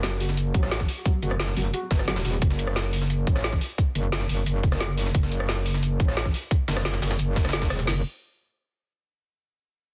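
A straight 4/4 groove from two layered electronic drum and bass kits with a tight kick, woody snare, rim click and metallic hats sits up front, the heavier kit joining at 0.5 seconds, while a gritty, pitched-up breakbeat sampler kit with a high-tuned snare hums tape-warm in the background. Beneath it, an aggressive, saturated FM wobble bass with a chorus sheen sustains low and prominent over a single minor chord, lending this dark, technical drum and bass excerpt a tense, mechanical edge. A soft, thick-felt upright piano with audible action noise plays intimate arpeggios through sidechain pumping and delay until 2.3 seconds, all within a dense, heavily limited digital ambience.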